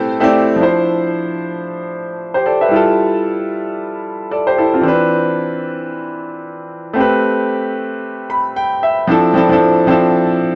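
A lilting swing on the sixteenths gives this relaxed, soulful amapiano cut its loose 4/4 sway. A clear concert grand piano carries the whole accompaniment, its open, up-front sound carrying a deep bass and reaching from E3 up to B5. The harmony moves through rich extended chords, Am9, Dm9, Fmaj9 and Cmaj9, before circling back to Am9. At 8.0 seconds the piano plays a fill that leads into a drop at 9.1 seconds, where the music settles onto Dm9 until the clip ends at 10.6 seconds. A light reverb surrounds the piano, while the dry, gritty hardware sound and cassette-tape character give this fragment of a longer piece a lived-in, slightly worn texture.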